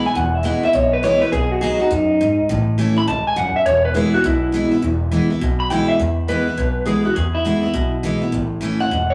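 A twangy electric guitar through a small old amp leads this rowdy, retro rockabilly excerpt, its slightly broken-up tone soaked in spring reverb as it carries a clean solo over the first 6.0 seconds. Up front beside it, a picked steel-string dreadnought acoustic guitar supplies full-bodied, bright accompaniment. An upright bass with gut strings enters at 0.1 seconds, plucked pizzicato with a woody, thumpy sound underneath. The swung feel pushes the tune along through chord changes from E to B, A and back to E, with a move to A at 8.3 seconds in the closing section. The sound is a rough rehearsal-room recording with tube saturation, small room ambience and moderate studio reverb, cut from a longer piece.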